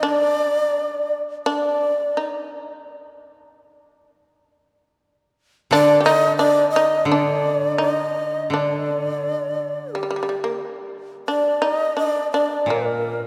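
A breathy, bright, reedy shakuhachi carries the melody up front in this austere, calm piece of Japanese traditional chamber music at 85 BPM in a loose, rubato 2/4, joined from the start by a buzzing, plectrum-plucked shamisen second line, with both falling silent at 2.5 seconds and returning at 5.7 seconds, when a woody fingerpicked koto also enters low beneath them, all set in the long, wet reverb of a church or concert hall in this short cut from a longer work.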